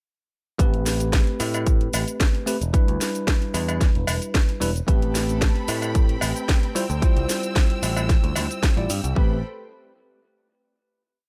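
A dry, close-sounding nu-disco piece at 112 BPM in A minor, with a cosmic, sleek mood, built on a punchy four-on-the-floor electronic kick placed up front and a house kit supplying shaker, open and closed hats and a cracking snare on the disco backbeat, with a vintage, band-limited cowbell joining at 1.4 seconds. A warm picked electric bass plays a syncopated riff beneath bright, bell-like tine electric piano stabs that pump against the kick and trail tape echo, moving through Am9, Em7 and Dm11. At 4.9 seconds a lush, biting symphonic string section enters with sustained, vibrato-rich chords, also pumping, before the piece settles on a final Am9 at 9.2 seconds.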